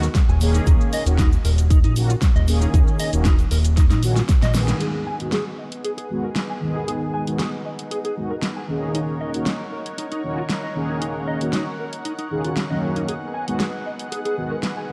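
A punchy, up-front electronic kick and a fat, saturated analog bass drive the opening of this cosmic, groovy nu-disco excerpt, alongside a pop drum kit with a fat snare, a very quiet egg shaker, brassy detuned synth brass chords, and a dark, clean fingered electric guitar riff glazed with chorus and delay. After a drum fill from 3.8 seconds, the kick, bass and shaker drop away as the opening section closes around the band accent, and a lush, airy unison pad with sidechain pumping enters at 4.8 seconds. The pad joins the synth brass and guitar over a slow alternation between minor seventh chords, all within a dark production and light reverb.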